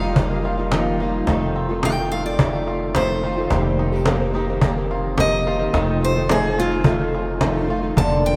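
A bright, picked steel-string acoustic guitar carries the melody with slapback echo and a hint of finger squeak, taking a solo from 1.3 s in this peaceful, hopeful acoustic folk piece at 108 BPM in F mixolydian. Beneath it, an up-front, dark, boxy twelve-string acoustic guitar fingerpicks shimmering, octave-doubled accompaniment, while a mellow, twangy banjo plays arpeggios in the background and a woody, thumpy pizzicato upright bass holds the low end. A veiled, muted string section adds very quiet, lush sustained chords until 1.3 s, and a vintage, band-limited cajon with faint snares, played with hard hands, keeps time in the background, all set in a vast, echoing cathedral reverb.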